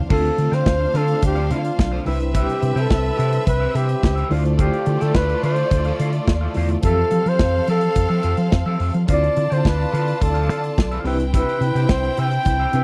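A breathy, whispered flugelhorn carries the melody up front with light vibrato and a soft attack, over a sultry, glamorous disco groove at 107 BPM in D dorian, cycling through Dm7, Cmaj7 and Fmaj7. A punchy modern drum kit with a rolled-off top and a dark, round fingered electric bass drive the straight 4/4 feel, while a rich, bowed violin section adds a lush second line and a twangy, slightly broken-up electric guitar with chorus sits quietly in the mix. A worn, slightly out-of-tune tine electric piano with medium tremolo murmurs in the background, all captured in a dry, close 1970s-style studio sound in this cut from a longer piece.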